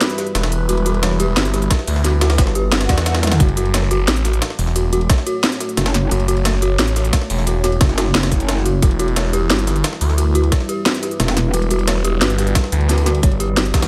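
A straight 4/4 drum and bass groove at 177 BPM drives this aggressive, futuristic slice of dark technical drum and bass, with an up-front kit of cracking snare, crisp hats and toms layered over a gritty, pitched-up breakbeat sampler kit, a tight electronic kick arriving at 1.7 s, a swirling, saturated phased saw bass up front, a metallic FM wobble bass surfacing at 5.8 s, an eerie, inharmonic synth bell arpeggiating with dub echo, a moody ambient pad pumping in the background, and a brief electronic swell at 2.9 s as the chords move from E minor to F-sharp minor and back.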